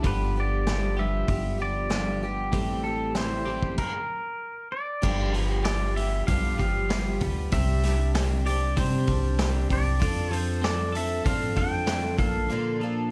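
A straight 4/4 pulse at 96 BPM drives this nostalgic, jangly folk rock and heartland rock excerpt, with a gritty, saturated vintage drum kit and a woody, growly upright bass up front, a shimmering, octave-doubled twelve-string acoustic guitar picking the accompaniment, and a clean, twangy twelve-string electric riff set in the background. A bright pedal steel guitar carries the melody from 0.1 s, played with fingerpicks and slide and coloured by volume swells. The band breaks for a stop from 3.8 to 5.0 s, then moves through G7, Csus2 and F6 toward Bbmaj7 in a small, lightly reverberant room.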